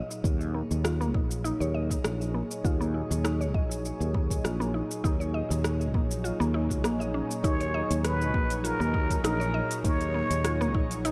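A smooth, detuned analog pad and a woody, round mallet-like synth pluck open this meditative organic downtempo excerpt. The pad's sustained chords pump under sidechain, while the pluck's arpeggios are coated in cassette tape, tape echo and shimmer reverb, with a filter sweep on the pluck throughout. Overdriven electronic drums arrive almost at once, a deep kick beneath metallic hi-hat, rim click and shaker in a light sixteenth-note swing, and a growly, up-front fretless electric bass holds the low end with analog chorus. At 7.4 seconds a raspy, close-miked trumpet with plunger mute takes a jazz-style solo, its wah-wah growl and scooped notes trailed by tape echo, inside a dark mix with moderate scoring-stage reverb.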